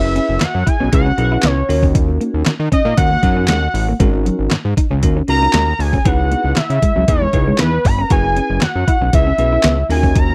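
Early-eighties boogie funk at 117 BPM in a straight 4/4, this late-night, danceable excerpt is cut from a longer piece and moves through F#7sus4, D#m7, G#9sus4 and C#m9 chords. A fat, detuned sawtooth lead with vibrato and tape echo carries the melody up front over a thick, saturated analog bass with filter sweeps, while a bell-like tine electric piano plays bright accompaniment and a clean, hollow-body semi-hollow guitar with lush chorus picks a riff in the background. From 0.2 seconds, a detuned 8-bit drum machine drives the groove with a thumpy kick, medium-tuned snare, hi-hat and handclaps, overdriven and re-recorded in a large room, all within a dry, close 1970s-style studio sound.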